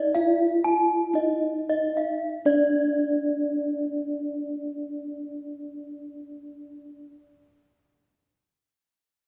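Two bronze gamelan-type metallophones ring out together from the start of this ceremonial, shimmering gamelan fragment in 4/4 at 52-63 BPM, which slows down over its first 2.3 seconds: one, struck with padded disc mallets, carries a mellow, soft melody in the middle register, while the other, played with a wooden mallet, sounds arpeggios an octave-range higher, both placed up front with paired tuning that makes their metallic tones beat, all heard in the wet reverb of a church or concert hall with some lossy compression artefacts, over about 7.1 seconds.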